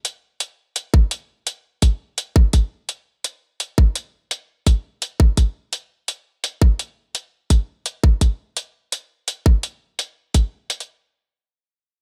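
Drum and bass with a dark, heavy mood, this short cut from a longer piece rides a half-time feel in 4/4 with a swung sixteenth-note lilt. An electronic hi-hat opens alone and runs throughout, its metallic, layered sound sitting up front in the mix. The electronic kick drum enters at 0.9 seconds and continues until 10.4 seconds, tight and produced, and noticeably louder than the hats. Both parts were re-recorded in a small room, lending them a close presence. Little reverb touches the overall sound, so the beat stays dry and direct from start to finish.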